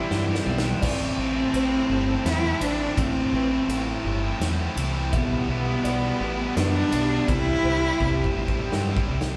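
Brooding and cinematic, this post-rock excerpt at 84 BPM in 3/4 sets a rich, bowed cello melody with vibrato up front over two distorted guitar riffs, one tight and bright and one thick with fuzz, along with a growling overdriven fingered bass and a big rock drum kit with a punchy kick and bright cymbals that plays fills at the start and from 8.0 s, while a twangy twelve-string electric guitar with spring reverb arpeggiates only until 0.8 s, when a boxy, felt-muted upright piano enters with soft arpeggios, and a warbling, lo-fi tape-like pad holds detuned chords, the band captured live in one room with a 1.3-second studio reverb as the harmony moves through Cadd9, Am and Emadd9/B.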